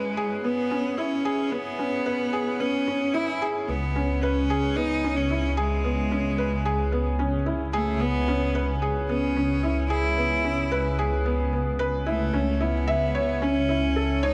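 Piano and strings electronica in C# minor at 111 BPM, intimate and hypnotic, cut from a longer piece. A felt-muted upright piano plays a soft, mellow riff beneath a clear, bowed cello melody with focused vibrato, both up front in light reverb and small room ambience, over a C#m7 that shifts to A/C# at 12.3 seconds. After a short build-up, a dark detuned saw bass enters at 3.7 seconds for the drop, adding a deep, rumbling, saturated low end on C#2.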